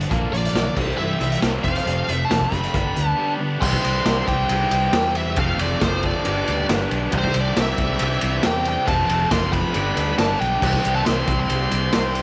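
A gritty, boomy garage drum kit pumps up front in this confident, swaggering classic rock excerpt at 137 BPM, alongside three bright, picked rhythm guitars (one distorted, one double-tracked and overdriven, one raw) and a punchy fingered bass, while a bluesy lead guitar carries the melody from 0.3 s, a very quiet, thick tonewheel organ with key click and slow rotary speaker holds sustained chords, a nasal parked-wah guitar adds a second line from 3.6 s as the music settles into C major, and a grainy egg shaker joins at 10.6 s, the whole mix sitting in a small room with moderate spring reverb.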